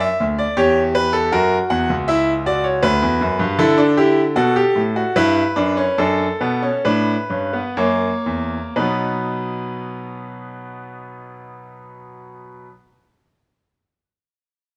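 A bright concert grand piano plays a baroque-style three-part fugue in 3/4, its brilliant, open tone reaching from deep bass up into the treble with long sustain and an up-front presence. The mood is driving yet contemplative, with the pace slowing from 2.5 to 8.8 seconds as the harmony moves through F#7 and Bm/D toward a new passage that settles on B at 8.8 seconds. A moderate large-studio reverb gives the solo piano a roomy, spacious air in this short piece cut from a longer work.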